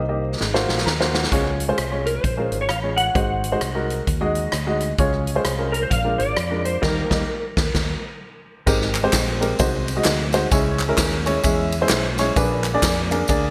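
Bright, 1980s-style digital production frames this short excerpt from a longer piece in a lush hall reverb, with a touch of small-room ambience. It is jubilant yet reverent uptempo gospel in Ab major at 130 BPM, swinging in 4/4. A dark, clean lap steel guitar sings the slide melody through an ensemble chorus until 8.2 seconds, while a worn, intimate baby grand piano sits up front with audible action noise, supplying accompaniment and fills. A round, punchy fingered electric bass anchors the low end. The big-band drum kit has a boomy kick, a medium-tuned snare and gated reverb, and it plays an opening fill, while the whole band hits an accent that leads into the second section. At 8.7 seconds, tambourine and group handclaps join in the background as the harmony moves through Abmaj9, Dbm and Bb7b9.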